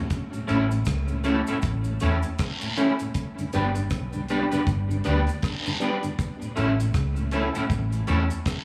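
Up front, a dark, round, foam-muted electric bass anchors this uplifting, laid-back roots reggae excerpt, moving between A and G beneath a slightly broken-up, twangy picked electric guitar dressed in chorus, slapback and tape echo. A dry drum kit with a tight kick, hi-hat and rim click sits alongside band-limited cabasa and guiro, while a mellow tonewheel organ with key click and a slow rotary speaker adds tape-echoed colour. The whole band is heard through a club PA, with plate reverb and small-room ambience.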